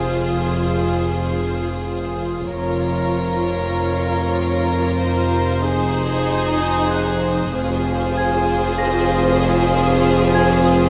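A bell-like, delicate celesta glimmers high above bowed strings in this uneasy, ominous suspense film score at 96 BPM in F phrygian, where sul tasto violins carry a floating melody over a pure second violin line, woody, vibrato-laden violas, cellos and an up-front, rich double bass section anchor a low F pedal, and the harmony moves from Fm to Ab/F at 5.0 seconds before returning to Fm at 7.5 seconds, all inside a moderate scoring-stage reverb.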